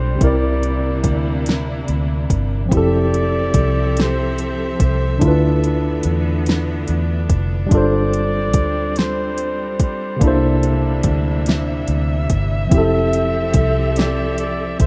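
Sultry and late-night, this slow six-eight R&B passage at 48 BPM, cut from a longer piece, sets a breathy, whispered flugelhorn melody with vibrato over a worn, slightly out-of-tune electric piano with light overdrive, lush bowed strings holding sustained chords, a dark, round, foam-muted fingered electric bass, and an up-front electronic drum kit with a fat snare and metallic hats entering at 0.2 seconds, all moving through C9, Fmaj9, Dm69 and G9sus4 in a dry, rough home-demo mix.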